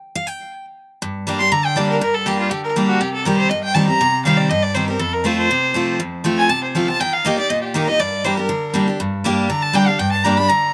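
Bluegrass in G minor at a driving 241 BPM, this rustic excerpt opens with a bright, full-bodied picked steel-string acoustic guitar, finger squeak audible, before a clear, earthy bowed fiddle with light vibrato and slapback echo enters at 1.4 seconds to carry the melody up front over Gm, Cm, F and Eb chords, all heard dry in an open-air setting.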